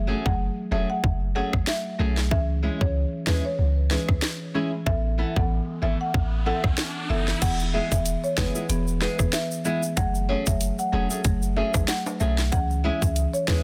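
A swung dancehall groove in 4/4 drives this sunny, summery excerpt, built on an electronic island pop drum kit whose tight kick, sharp snare, rim click, hi-hat and crash sit up front. Beneath it, a deep, boomy 808-style bass with a sine body, a noise layer, a fast attack and a decaying tail carries the low end. A dark, fingerpicked flamenco guitar plays arpeggios, while a woody marimba on padauk bars carries the melody through a digital delay, and a second, buzzing marimba adds dry, smooth accompaniment that pumps with sidechain. An electronic riser sounds from 5.6 seconds, and at 7.4 seconds bright, close tube shaker and timbales struck with hard hands join for the second section as the harmony moves from F#madd9 and C#m through Asus2 to E. A small room reverb surrounds the parts, and a dense, heavily limited modern master finishes the track.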